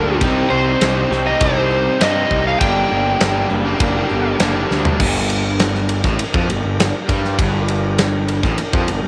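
Lightly reverberant studio sound frames this brooding, driving classic rock clip in G minor at 100 BPM, where a dark, overdriven slide guitar with slapback echo carries the melody until 4.4 seconds over a growly fuzz bass and a punchy, fat-snared big-room drum kit up front, while two bright, crunchy picked electric guitars riff in the background, a very quiet, gritty tonewheel organ holds thick sustained chords through a slow rotary speaker, and a very quiet, boxy, shimmering twelve-string acoustic guitar adds octave-doubled picked accompaniment, until a drum fill at 4.7 seconds leads into a sparser passage at 5.0 seconds as the acoustic and one crunchy guitar drop out.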